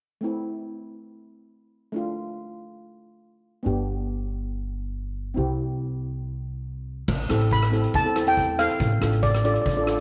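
A shimmering lead steel pan, played with medium rubber sticks and carrying a slapback echo, takes the high melody from 7.5 s in this bouncy, sunny calypso excerpt at 140 BPM, riding over mellow cello pans that play the Am, Dm/A, G and C chords from the start, a woody, growly pizzicato upright bass that enters at 3.7 s, and a street-band drum kit with a boomy kick and dark cymbals that joins at 7.1 s, the whole heard within a moderate spring reverb.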